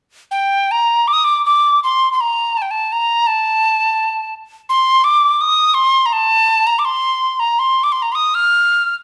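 A lone wooden whistle opens this short Celtic folk excerpt at 0.3 seconds and carries it alone until 9.0 seconds, setting a longing, mournful mood. The tempo sits around 82 BPM in 3/4, but the beats fall unevenly and the phrasing breathes with rubato, giving the line a free, sung quality. The whistle plays high, between G5 and F6, with an airy, woody tone, a crisp chiff on each attack and lifted highs that keep it bright and present. Vibrato and expressive shaping lend the melody its ache, and the instrument sits up front in the mix. A moderate recital-hall reverb, about 1.6 seconds long, surrounds the whistle with a sense of open space, as if the tune were heard in a hall and lifted from a longer piece.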